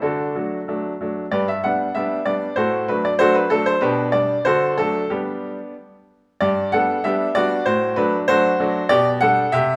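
A cheerful, graceful classical-period piano sonatina in G major at 95 BPM in 2/4, its rubato giving the beats an uneven, breathing feel, played on a solo baby grand piano whose brilliant, open tone sits up front across a range from G2 to F#5, heard through a moderate recital hall reverb in a roughly 9.8-second passage cut from a longer piece, where a repeated phrase moves between D and G harmonies.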